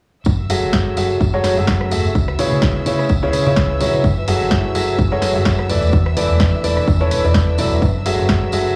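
A dry, gritty recording with cassette-tape and transformer saturation in a small room carries this bittersweet, soulful piano house cut at 127 BPM in F# minor, swung on the 16ths and moving through F#m9, C#m7 and E7sus4. A clear, up-front grand piano riff and a punchy overdriven fingered bass pump against the sidechain alongside a layered electronic kick and a house kit of hi-hat, rim click and snare, while a distant tambourine sits in the background. A smooth symphonic violin section holds sustained chords with light vibrato behind them, and from 1.9 seconds a very quiet, ethereal pad with a slow attack and phaser drifts in.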